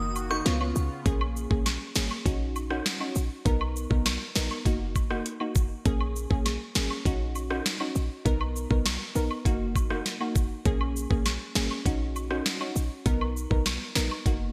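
A straight 4/4 dancehall groove at 100 BPM in Eb minor drives this hypnotic, bouncy excerpt, cut from a longer piece and tuned to A4 = 439 Hz. It opens with a brief break in which a smooth, detuned sawtooth analog pad holds sustained chords in the background, pumping under sidechain with chorus, before it stops at 1.1 s. The electronic afro-pop kit sits up front from 0.3 s, with a knocking kick, sharp snare, metallic hi-hats and rim clicks, all washed in gated reverb and re-recorded in a large room. Beneath it, a short, punchy 808-style bass with a sine core and noise layer strikes with a fast attack and then decays, while a close, dry cabasa and woodblock part adds acoustic tube-shaker and group-handclap colour. Up front, a crystalline wavetable pluck with a filter sweep and chorus carries the accompaniment over a looping Bbm7, Ebm7/Bb, Bmaj7, Gb6 progression, all framed by a bright 1980s-style digital production and light digital ambience.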